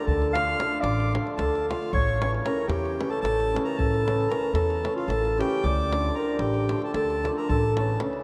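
Drenched in a vast, echoing cathedral reverb, this short cut of fiery yet bittersweet Balkan wedding-band folk runs at 226 BPM in eighths through a straight 7/8 in A phrygian dominant, alternating between Dm and A. A dark, distant clarinet carries the melody in a classical solo style with soft attacks, while a reedy, airy accordion plays a clear second line high above and a shimmering, ringing hammered dulcimer fills in the accompaniment. Underneath, a woody, growly pizzicato upright bass sits up front, and a tight davul keeps the percussion in the background.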